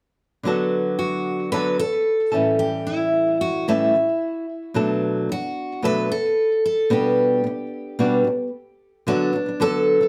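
In straight 4/4 at 111 BPM, this carefree, sunny pop excerpt in D major opens at 0.4 s with an up-front, fingerpicked flamenco guitar whose finger squeaks carry a D6, A7, Bm7 and Gmaj7/B progression, joined at 1.0 s by a warm, picked dreadnought steel-string acoustic carrying the melody through tape echo, both sitting in a moderate studio reverb until the music returns to D6 at 9.1 s.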